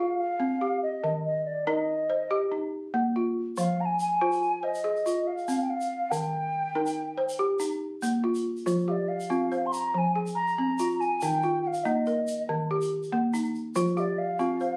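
A mellow, hollow wooden flute carries the melody from the start, its pure tone shaded with vibrato and tongued notes as it moves between D5 and C6. Beneath it, a balafon plays arpeggios from Eb3 to D5, struck with soft rubber mallets for a round, woody, dry sound that sits up front in the mix. This short cut from a longer piece of West African traditional string and xylophone music moves in a straight 12/8 at 94 BPM in F dorian, with a hypnotic, reflective mood. A grainy, bright tube shaker joins quietly at 3.6 seconds, and the harmony sways between Fm and Eb before settling on F5 at 13.8 seconds. A second section begins at 8.7 seconds. The phone-in-the-room recording adds a light club reverb.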